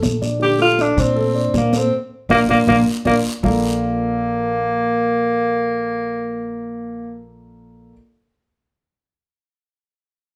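Afro-Cuban jazz in Bb major at a lively 158 BPM, this sunny excerpt from a longer piece opens with a dark, mellow baby grand piano, its action noise audible, comping beside a woody pizzicato upright bass, with a Bbmaj7 arriving at 0.4 seconds. Bright, high-tuned congas sit close and dry in the background and a raspy, close guiro plays along until 3.5 seconds. A punchy, roomy tenor saxophone enters up front at 0.4 seconds to carry the melody, and a band accent with a drum fill leads into the second section at 3.4 seconds. The whole group plays live in one large studio with moderate reverb.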